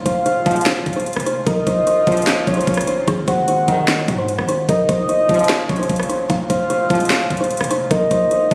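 Captured on a phone in a room with light studio reverb, this brooding, menacing trap excerpt in Bb minor moves at 149 BPM in a half-time feel, with an overdriven trap kit of knocking kick, sharp snare, metallic hats, handclaps and rim clicks up front, a deep, boomy 808-style bass, a buzzing, woody kalimba melody under a low-pass filter, a round octave-layered synth lead carrying a second line with chorus, delay and vibrato, mellow brass ensemble stabs with delay entering at 0.5 seconds, and a bright, evolving sawtooth pad with chorus and phaser holding chords from Fm to Bbmadd9 and Ab7 in the background.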